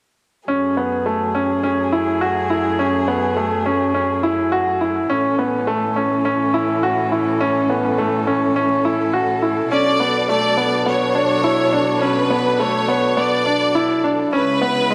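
A straight 4/4 pulse at 104 BPM, marked only by a barely audible, overdriven electronic hi-hat, carries this cinematic, melancholic piano and strings electronica in F# minor, cut from a longer piece and moving from F#madd9 through A and Bm7 to C#m7. A brilliant, up-front grand piano with audible action noise repeats a riff through delay over sustained chords from a dark string quartet, close and expressive with vibrato and portamento. At 9.7 seconds an intense symphonic violin section enters with a lush, bright melody, all set in a wet hall reverb.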